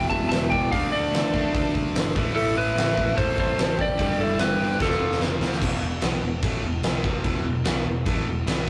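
A straight 4/4 pulse at 147 BPM drives this aggressive hard rock passage in E phrygian, where a huge arena drum kit with a fat snare and punchy kick sits up front under a fuzzy, bright picked bass and two overdriven rhythm guitars playing the riff in the background. A slightly broken-up, compressed lead guitar carries the melody over a warm, distorted octave-fuzz second line, both dropping out at 5.2 s as a drum fill runs to 5.6 s, where the cranked stack guitar also stops and a new section begins on the remaining guitar, bass and drums. The whole take has a rough rehearsal-room character with tube saturation and a moderate stone-room reverb.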